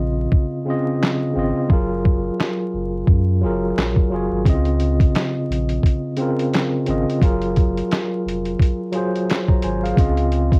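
Lo-fi hip hop at 87 BPM in 4/4, with a 57% swing on the sixteenths, this reflective, hazy piece is cut from a longer track. A clean tine electric piano sits up front, playing accompaniment from the start through 10.6 seconds. It carries cassette tape coloring and a low-pass filter, and it sounds as if heard through built-in speakers. Beneath it, a round, deep sine sub bass with a fast attack and sustained notes holds the low end. A compressed, muffled sampler-style drum kit enters at 0.3 seconds with handclaps, hi-hat, a thumpy kick and a medium-tuned snare; it is pitched down and up front, with 12-bit grit and tape character. The opening is marked as a break lasting until 4.5 seconds, and the harmony moves between Dbmaj9 and Gbmaj9, all under light reverb, vinyl crackle and the character of a home cassette recording.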